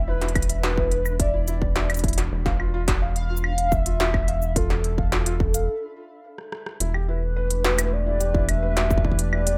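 A warbling, chorused lead carries the melody over muted upright piano arpeggios with audible action noise, a rubbery, tube-saturated square bass and a faint, flickering grainy texture that stops at 5.7 s, while a clanging industrial drum kit and a distorted, distant electronic kick push this intricate, cerebral IDM excerpt in 4/4 through a brief break and drum fill until a detuned, tape-like pad arrives at 6.8 s on an Em7 chord, the whole captured as a rough, lightly reverberant home demo.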